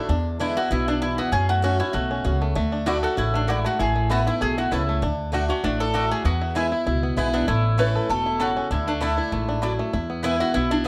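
Bluegrass at 195 BPM in A major, joyful and driving with a swung feel, as boxy picked acoustic guitar and twangy fingerpicked banjo arpeggios open together, a dark pizzicato upright bass sits up front, a woody double-strung mandolin carries the melody with plate reverb from 0.4 seconds, and a second mandolin adds softer stabs from 2.9 seconds, all in a moderate studio room in this cut from a longer piece.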